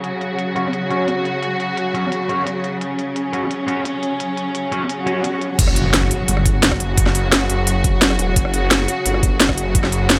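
A straight 4/4 pulse at 173 BPM drives this tense, futuristic excerpt of dark technical drum and bass, with a crisp, tape-tinged kit of cracking snare, rim click, hi-hat and crash running throughout under sustained chords from a rich, smooth symphonic string section carrying light vibrato and 12-bit sampler grit, while bright, double-tracked fuzz guitar stabs cut in from 0.6 to 5.2 seconds through delay. An electronic swell in the background leads into a drop at 5.6 seconds, marked by a background impact, where a knocking, overdriven electronic kick and a swirling, detuned saw bass with a phaser take over the low end. The strings pump against the beat, and the whole sits in light reverb.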